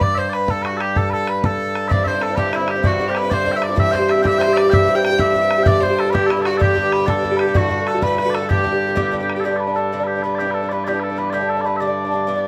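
Sweet, mellow small bagpipes lead this cheerful, lively Celtic slide in G major, carrying the melody up front with a continuous, vibrato-tinged tone from the opening moment through to the end of the excerpt. A single bowed fiddle plays a clear, biting second line with light vibrato and a smooth top, while a damped, tight bodhran gives close, dry percussion. Both the fiddle and the bodhran drop out around 9 seconds, as the music reaches its second section. An Irish bouzouki joins at 1.9 seconds with picked, metallic double strings, supplying acoustic accompaniment through chords such as Cadd9, Am7, G and D. The piece moves in a straight 12/8 at 127 dotted-quarter beats per minute, set in a moderate studio reverb, and it is cut from a longer performance.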